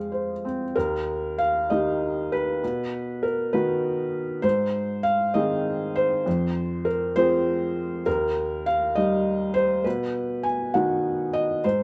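A rubato 6/8 pulse at 66 BPM, counted in dotted quarters, carries this peaceful, tender neoclassical minimalist piano piece in Eb major, tuned to A4 = 435 Hz and cut from a longer work. A felt-muted upright piano plays solo from 0.0 to 11.8 seconds, spanning Eb2 to Ab5 with a soft, mellow, boxy tone, thin felt and audible action noise placed up front for an intimate feel. The chords move through Fm, Eb, B and Ab in a moderate studio reverb, captured live in one room.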